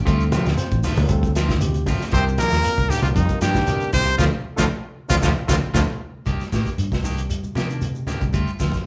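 Recorded live with the whole band in one room, this driving, funky afrobeat cut from a longer piece has a roomy glow from a moderate large-studio reverb. A crunchy breakbeat kit, saturated and gritty with a punchy kick and a rolled-off top, anchors the groove beside a round, amped fingered bass, while grainy shekere and low-tuned, thick-skinned congas sit in the background. A twangy, slightly broken-up picked guitar plays stabs over very quiet, clean fingered arpeggios from a second, darker guitar, and a very quiet bright tine electric piano adds accompaniment until about 5.8 seconds. At 2.1 seconds an up-front trumpet takes the melody with vibrato and a smooth top, supported by a very quiet punchy trombone section and a warm vintage trombone playing second lines. A band accent lands around 4.2 seconds, and after a drum fill the rhythm section and guitars carry the closing stretch.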